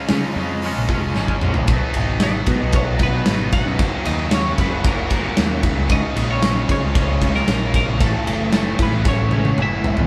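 A straight 4/4 pulse drives this anthemic, restless slice of quiet-loud alternative rock, cut from a longer piece and played by a band live in one room with light reverb. A big acoustic drum kit sits up front, dark and smooth with a punchy kick and a medium-tuned snare. It fills at the close of the opening passage and again from 9.1 seconds. Underneath, a growling picked bass with overdrive holds the low end, while two bright, distorted picked guitars grind out riffs in the background. On top, a bright, twangy twelve-string electric guitar carries the melody through phaser and digital delay. A twangy clean guitar plays tremolo-washed arpeggios only until 1.7 seconds, when the band moves from C# to B and on through F#, C#add9 and A6. From 2.5 seconds a very quiet vintage string machine adds silky, slow-blooming sustained chords with an ensemble chorus shimmer.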